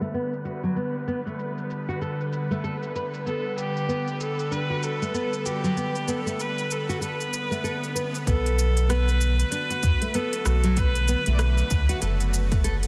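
A swung sixteenth-note groove at 96 BPM in 4/4 drives this meditative, mystical organic downtempo passage in B minor. It is cut from a longer piece. Crisp, overdriven hi-hat, rim click and shaker from an organic electronic kit sit under a fingerpicked nylon-string guitar whose full-bodied arpeggios carry finger squeak, delay, shimmer reverb and a filter sweep. A bright, nasal, detuned bowed-like drone holds sustained chords with vibrato and sidechain pumping, while a dark, breathy wind-like texture hovers in the background. From 3.3 seconds a clear, focused kamancheh enters with a distant bowed melody full of vibrato and portamento, treated with digital delay and shimmer. A background electronic swell begins at 7.3 seconds, and at 8.3 seconds the harmony moves from G to Bm7 as a round sine sub bass and a deep, layered, overdriven kick arrive. The dense, heavily limited master sits in a lush hall reverb with a low-pass filter.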